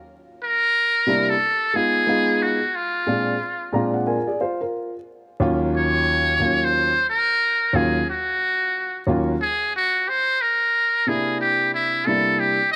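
Swung sixteenths at 90 BPM give this mellow, smoky hip hop excerpt in Eb dorian a lazy lilt, as a buzzy, thin metal-muted trumpet with vibrato and scooped notes carries the jazz-style melody from 0.4 seconds over an intimate, dark concert grand piano with deep bass and audible action noise that enters at 1.1 seconds and adds a fill at 3.4 seconds, all set in light reverb with vintage vinyl crackle.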